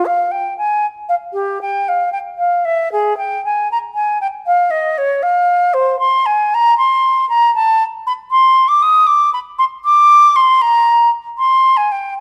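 A silver concert flute plays alone throughout this short, introspective cut from a longer baroque-style fantasia, its airy, metallic tone carrying vibrato and tongued articulation as it ranges from G4 to Eb6. The solemn line moves in a rubato 12/8 at about 78 dotted-quarter beats per minute, starting in F minor and turning to C minor at 6.0 s. A moderate recital hall reverb with a 1.6-second decay surrounds the instrument, which is tuned to A4 = 444 Hz.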